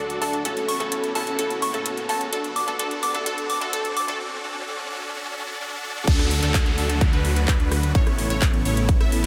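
A punchy, up-front electronic kick drum lands at the drop at 6.1 seconds in this anthemic, euphoric festival progressive house excerpt in D major at 128 BPM. Before it, a build-up features a riser, filter sweeps on a huge, thick supersaw riff and on a catchy plucky lead arpeggio (both sidechain-pumped with dub echo), a soft, pure FM bell melody with chorus and phaser, and a bright, twangy clean electric guitar that drops out at 4.2 seconds for a brief break. Underneath, a menacing, saturated detuned saw bass drives the track, while dark, woody strings hold background chords, a big-room kit adds metallic hats, claps, rim clicks and crashes, and a downlifter sits among the effects, all over a light reverb.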